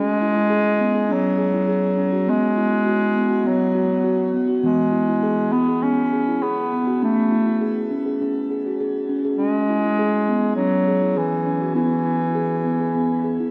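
A clear, vintage-toned bass clarinet sings a gentle solo melody in a classical style, sitting up front alongside a steel tongue drum whose round, ringing arpeggios are struck with rubber mallets. Both parts carry a shimmer reverb and play together from 0.0 to 13.5 seconds, moving through a dreamy progression that opens on C#m and comes to rest on E. This meditative world piece, cut from a longer work, has a dark production that sits in the long wash of a concert hall.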